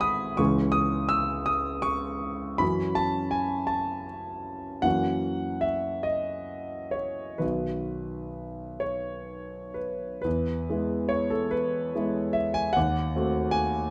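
Nostalgic and dreamy, this short passage from a longer romantic nocturne unfolds for solo concert grand piano in 6/8 with a freely breathing rubato. The piano sounds intimate and natural, sitting up front with a deep bass and the audible noise of its action adding a close, human presence. Its range stretches from the low bass register up into the high treble. The opening section drifts through C#m, F#5 and F#7 before settling on B. At 10.3 s a new section begins on E, and a D#dim7 at 12.8 s leaves the phrase suspended. A moderate studio reverb gives the instrument a gentle sense of space, and the playing carries a warm, reflective glow throughout.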